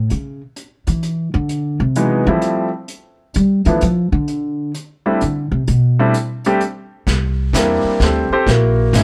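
Light reverb gives this jazz piano trio fragment a gentle sense of space, with the plucked upright bass and grand piano both sitting up front. The mood is playful and relaxed, swinging in 3/4 at 129 BPM in C major. The pizzicato bass, woody and thumpy on steel strings, carries a solo from the start until 7.1 seconds. Brushes on a vintage kit join at 0.1 seconds, their small-room sound tight in the kick and rolled off on top across snare and hi-hat. The concert grand enters at 2.0 seconds with a natural, deep-bottomed melody. Harmonies move from Dm11 and G7(no3) to a C69 and a closing F#9.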